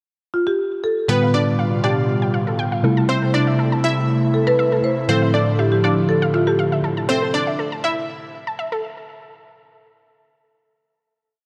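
Dance-pop at 120 BPM in A minor, confident and energetic, where a woody marimba with tape echo opens at 0.3 s before a round, chorused analog pluck enters with a repeated hook doubled in octaves, a worn, slightly out-of-tune tine electric piano plays syncopated chords up front, an airy, breathy pad holds sustained chords, and a punchy unison pluck with tape echo runs sixteenth-note arpeggios until 8.8 s, all set in a dark production with a lush hall reverb.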